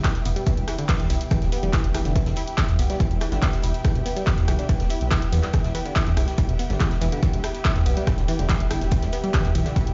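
Driving, industrial peak-time techno at 142 BPM in E minor, this short cut from a longer piece sits on an up-front, punchy layered kick and a menacing, beating detuned saw bass that enters at 0.3 seconds with sidechain pumping, while a nasal, decaying analog pluck riff runs through chorus, phaser, tube saturation and digital delay, a breathy, warbling pad hangs behind, a tape-warm drum machine adds handclaps, hi-hat and rim click, a very quiet vintage kit contributes hi-hat and a medium-tuned snare, and a barely audible impact opens the first 0.5 seconds, all heard dry through a big sound system in a bare stone room with a dark, rolled-off top end.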